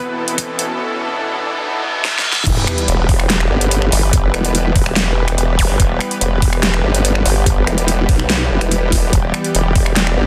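Chaotic and menacing, this heavy wobble dubstep cut in E minor runs at 144 BPM with a half-time feel, opening on a build-up where a lush, detuned supersaw pad pumps under sidechain, and a riser, reverse cymbal, sub drop and zap effects gather over drum fills and a filter sweep. At 2.5 seconds the drop hits with an impact, and a sawtooth-and-sine formant-sweep wobble bass, chorused and overdriven, sits up front. A second, saturated pulse-wave wobble bass joins at 3.5 seconds over a knocking electronic kick and a tape-toned dubstep kit of crash cymbal, finger snaps, metallic hi-hats and a huge snare, all inside a dense, heavily limited modern master with light reverb.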